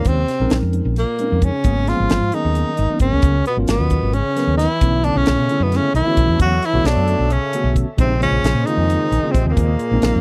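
A breathy, whispered tenor saxophone carries the melody up front with vibrato and scooped notes, while a dark trombone plays a second line in the background in this intense, slick electric jazz fusion cut from a longer piece, moving at 265 BPM in straight 7/8 through minor eleventh chords. Growly, hollow-body fretless bass and a tight funk kit with a high-tuned snare sit forward, with clean, bright tine electric piano accompanying through its built-in speakers. At 4.8 seconds a very quiet, brassy analog pad with chorus and a filter sweep joins, all captured in a dry, close 1970s-style studio sound.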